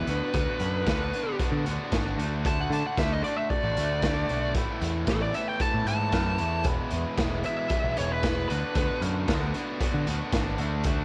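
A straight 4/4 indie rock groove at 114 BPM comes from a raw garage drum kit, its boomy kick, medium-tuned snare and hi-hat pumping in a small room with a saturated, rolled-off top, while a growling picked bass, overdriven and amped, holds the low end. Up front, a double-tracked cranked stack guitar drives the riff with overdrive, and a compressed fuzz lead guitar solos with analog delay until 9.0 s. Cassette tape grit and light room reverb give this wistful, carefree passage a home-recorded feel as the chords move from Bm/D through D, Asus2 and E.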